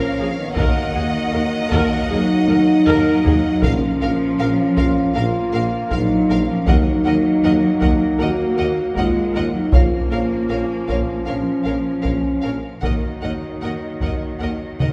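Cinematic, epic orchestral film score at 78 BPM, dark in mood, with chords alternating between Bbm and Ebm in a short cut from a longer piece. Warm, lush violins carry the melody over a close studio violin line and smooth violas, while a dark, tight French horn section and a clear, vintage-toned trombone section hold sustained chords above a bass of focused cellos, a mellow tuba and distant double basses. Hard-stick taiko drums enter at 0.6 seconds and play a fill at 2.5 seconds, very quiet timpani sound briefly at 3.6 seconds, and a wet concert hall reverb gives the whole ensemble a spacious glow.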